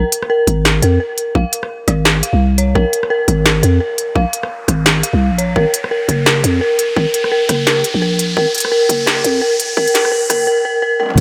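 An eerie, inharmonic FM synth bell plays arpeggios through chorus and dub echo over a growling, buzzy 808-style bass at the outset of this tense, dark half-time drum and bass build-up, as an industrial drum kit with a clanging snare, crisp hats and a tape-warm small-room character arrives, soon joined by a hard-clipped, high-passed electronic kick. An electronic riser runs from 1.8 to 10.5 seconds, a drum fill lands at 11.0 seconds, and a lush hall reverb drapes the mix.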